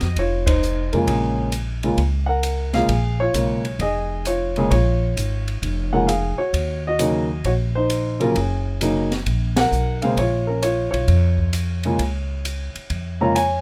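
A jazz piano trio opens together with a band accent at 0.4 seconds, setting a cool, moody swing as an up-front, woody upright piano carries the melody. Beneath it, a growly pizzicato upright bass with steel strings sits close, while a softer open acoustic drum kit in a studio room adds dark ride and hi-hat cymbals, a high-tuned snare and a boomy kick. The dry, intimate sound carries through another band accent at 9.5 seconds in this short passage cut from a longer piece.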